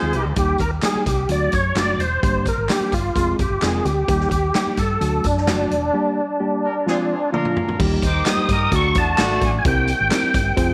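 A full-band accent opens this uplifting, danceable slice of uptempo 1960s-style soul, led by an up-front, reedy tonewheel organ carrying the melody through chorus vibrato and a slow rotary speaker, over a mellow reed electric piano, a round, dark hollow-body bass with tube saturation, and a punchy, big-room drum kit. Distant horns with slapback echo punctuate that opening accent and return at 6.6 seconds, as a second band accent and a drum fill lead into a new section, while faint, vintage tambourine and handclaps sit in the background. At 7.8 seconds a very quiet, lightly overdriven second organ adds sustained chords through a fast rotary speaker, with the whole mix bathed in echo-chamber reverb.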